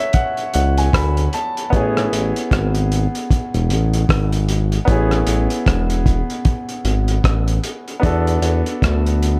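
The recording has a dark, intimate sound with little reverb, its parts sitting close and dry in a short passage cut from a longer piece of lovers rock reggae. A clear, natural grand piano opens with a fill that runs to 1.7 seconds and then stays on as accompaniment, moving from Dmaj7 to Amaj7 and finally to E9sus4. The drum kit enters at 0.1 seconds with hi-hat, kick drum and rim click, its cloth-damped, thuddy tone muffled and gritty with a tight kick, a rolled-off top and a saturated, lo-fi small-room character placed up front. From 0.6 seconds a smooth synth bass joins, mellow and nasal with a detuned blend of sawtooth, square and triangle waves, a fast attack, sustained notes and vibrato, also sitting up front. The sixteenths are swung, and the overall mood is tender and sweet, wrapped in a warm, dusky production.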